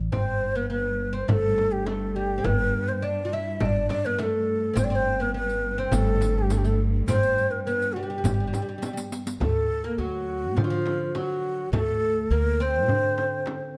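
Stately and festive, this Arabic maqam ensemble piece moves at 103 BPM in a straight 4/4, with a breathy, mellow ney carrying the melody up front over a plucked oud second line, a thumpy pizzicato upright bass, a lush bowed cello-section drone on G that holds until 9.5 seconds, crisp darbuka and small frame drum in the background, and a riq with bright jingles joining from 4.8 to 9.4 seconds, before a drum fill leads the music from G maqam rast into D maqam saba at 9.4 seconds, all in a close, detailed recording with light reverb.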